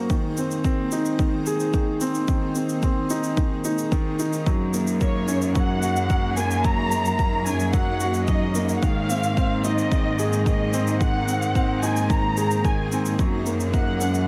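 A felt-muted upright piano riff, soft and intimate with digital delay, sits up front over a cloudy, evolving granular pad and a deep, overdriven electronic kick with an overdriven shaker, opening a hopeful, luminous piano-and-strings electronica build-up at 110 BPM in 4/4, Gb lydian. At 4.5 seconds the drop arrives with a clear, distant chamber cello section pumping beneath the chords, and at 5.0 seconds a dark, lush violin section takes the melody with expressive vibrato and portamento, its line echoed by digital delay. The pad pulses with sidechain pumping in the background as the harmony moves between Ab and Gbadd9, all set in light studio reverb.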